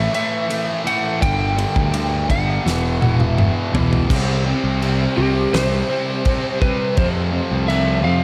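Quiet-loud alternative rock at 84 BPM in 4/4, this short passage from a longer piece feels anthemic and restless, set in a lush hall reverb that gives it a big arena sound. A growly, overdriven picked bass sits up front beneath two riffing guitars, a crunchy overdriven one tucked in the background with spring reverb and a thick, bright fuzz guitar with distortion and slapback echo. Over them, a dark, slightly broken-up lead guitar carries the melody, compressed and touched with slapback echo. A loose indie drum kit with a fat snare, punchy kick and dark cymbals plays a fill from 2.7 to 4.1 seconds, as the harmony moves from A5 and G5 power chords to Esus2. At 4.1 seconds the lead guitar takes a solo over C and F, and a very quiet, bowed symphonic string section enters with intense, vibrato-rich sustained chords.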